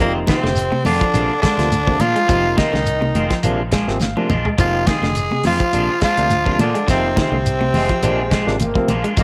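A damped 70s drum kit with a fat snare and tight kick sits up front in a lightly swung 4/4 groove, joined by a round, foam-muted fingered bass, bright high-tuned congas and a grainy shekere in the background, giving this short afrobeat cut a funky, hypnotic pull over an Fm7 to Bb7 vamp. A raspy, gritty tenor saxophone leads with vibrato through cassette tape and analog delay, shadowed by a lower, growling second tenor, while a barky tine electric piano comps and adds a fill from 3.4 seconds that the drums join with their own fill at 4.0 seconds. Two slightly broken-up, twangy electric guitars add picked arpeggios with subtle chorus and stabs, and a vintage trombone section slips in at 7.8 seconds, all sitting in a light studio reverb with the feel of a home cassette recording.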